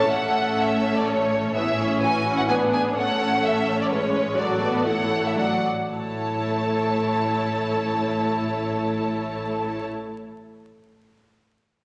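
Heard through a wet scoring-stage reverb with vinyl crackle, this excerpt from a lively, graceful classical-period movement for string orchestra moves in a quick 3/4 at 112-129 BPM in A major, with rubato phrasing and a slowing between 2.2 and 5.9 seconds. Up front, a lush studio violin section carries the melody with focused vibrato and a close, even viola section plays the accompaniment, while a chamber violin section adds a smooth-topped second line. In the background, a distant symphonic cello section, entering at 0.1 seconds, and an expressive chamber double bass section bow the bass beneath chords moving between A, E7/A and D/A.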